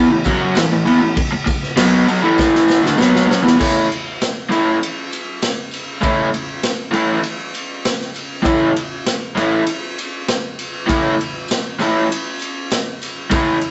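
A rough rehearsal-room sound with a moderate stone-room reverb and a rolled-off top frames this rowdy, swaggering garage rock excerpt at 99 BPM in A major, cut from a longer piece. An overdriven, double-tracked electric guitar riff sits up front from the first moment, picked and warm over a gritty, saturated acoustic drum kit with a boomy kick, medium-tuned snare, crash and ride cymbals and a pumping room sound, while a jingly tambourine sits very quiet in the background. A drum fill at 2.4 seconds leads into the second section at 3.6 seconds, where the harmony moves from an A5 power chord to a full A chord.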